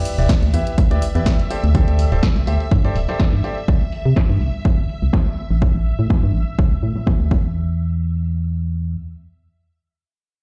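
A quiet sub-drop impact opens this bittersweet, soulful piano house cut at 124 BPM with a light swing, as shimmering, warbling string-machine violins hold pumping chords through Em7, D7sus4, C and A5 and a clear, intimate grand piano plays a riff with tape echo until 3.6 s, while a punchy analog drum machine's filtered hi-hat and snare, an up-front electronic kick, and a hollow, dark, organ-like FM bass that pumps with the beat drive the groove, the bass carrying on alone until 9.0 s in a bare-room sound.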